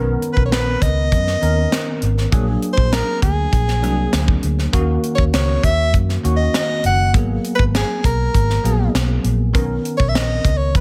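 A straight 4/4 groove at 100 BPM drives this glossy, urban slice of polished 1980s jazz-funk pop in B major, cut from a longer piece. A bright, bell-like tine electric piano with ensemble chorus and a dark, round, foam-muted fingered electric bass open at 0.0 s, joined at 0.2 s by a tight funk drum kit in a small room with a high-tuned snare, a tight kick and gated reverb, while a close-miked soprano saxophone carries the jazz-style solo melody up front from 0.3 s. The harmony moves from Bmaj9 through A#7b13, D#m7 and G#m9 before returning to Bmaj9.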